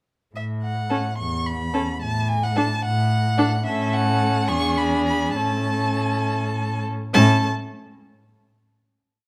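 Heard through a moderate recital-hall reverb with close, detailed microphones, this whole, lively and spirited classical-period movement for string quartet in 6/8 at 66-74 BPM in A major begins at 0.4 s with a rich first violin singing the melody with vibrato and portamento over the up-front cello's bowed bass on the beats, joined at 0.9 s by a smooth, even second violin and a clear, focused viola playing short accented chords in the rhythm of the tune, before the quartet settles onto a sustained final chord at 7.1 s.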